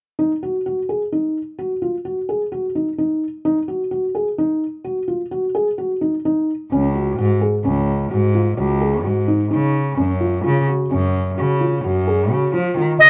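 A dark, intimate studio sound with moderate reverb frames this short excerpt of playful, shimmering contemporary chamber music in 7/4. A felt-muted upright piano with thick, mellow felt opens at 0.2 seconds with arpeggios, and a rich, reedy bowed cello with light vibrato and gut-string tone joins on the bass line at 6.7 seconds. A clear, distant clarinet touches a single melody note at 13.0 seconds as the passage is cut off.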